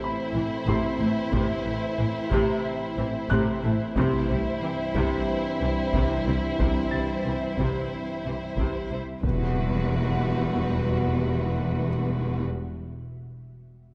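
A taiko ensemble struck with hard sticks drives this tense, relentless cinematic cue, a hybrid orchestral and electronic film score at 91 BPM in 4/4, set in E minor and cut from a longer piece. Lush bowed strings carry the weight: a violin section sings the melody with vibrato and portamento over a second violin line, while violas in the background, a rich, focused cello section and woody double basses fill out the accompaniment and bass. French horns with a soft attack, a very quiet, close-miked trombone section and an ethereal, airy pad hold sustained chords beneath, as a bright, brilliant grand piano adds high, intimate texture with audible action noise until about 9.3 seconds. The harmony moves from Am to C, then at 9.2 seconds a huge, dark impact lands on an Emadd9 chord as the taiko drop out. A moderate scoring stage reverb and a dark production give the ensemble a lush, enveloping depth.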